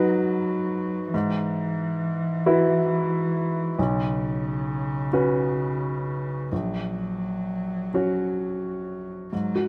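In a rubato 6/8 moving at roughly 42-46 BPM in dotted quarters, this reflective, longing neoclassical fragment pairs an up-front upright piano, whose woody, intimate tone carries audible action noise as it lays down the accompaniment, with a close, bowed solo cello played sul tasto that traces a second line from the very start, its soft attack, airy bow and light vibrato giving it a gentle warmth. The harmony drifts from G#m7 through Eadd9/G# and Bsus2 to F#/A#, all within a moderate plate reverb.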